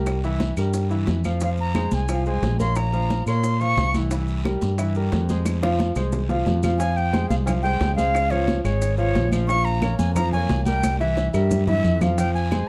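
A breathy, bright concert flute with vibrato and a crisp attack leads this fiery, danceable salsa excerpt in F minor at 178 BPM, entering at 1.4 seconds, dropping out at 3.9 seconds and returning at 6.8 seconds to carry the melody over a chord cycle built on Fm, Bbm, C7 and Db. Up front, a dark, round fretless electric bass anchors the low end, while a brilliant concert grand piano with audible action noise supplies the accompaniment. Behind them sit raspy guiro, woody claves, grainy maracas, low-tuned round bongos and thin-skinned congas, with drum fills near 5.5 and 10.8 seconds, all set in a dark production with moderate studio reverb.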